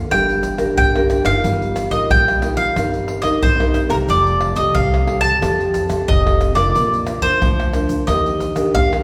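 A straight, even 4/4 pulse drives this festive, lively blend of samba and choro, carried by a close percussion group of tube shaker, pandeiro, tamborim and a deep surdo. Up front, a round, picked mandolin with doubled strings carries the melody. Beneath it, a dark, thumb-plucked classical nylon-string guitar supplies the accompaniment, moving from G minor through Cm7/G and Fadd9 to Bb and finally Ebmaj7. A woody, thumpy upright bass with steel strings is played pizzicato, sitting lower in the mix and entering at 0.1 seconds alongside the percussion. The whole ensemble is bathed in the wet reverb of a recital hall, giving the sound the spacious air of a church or concert hall, and this short passage is cut from a longer piece.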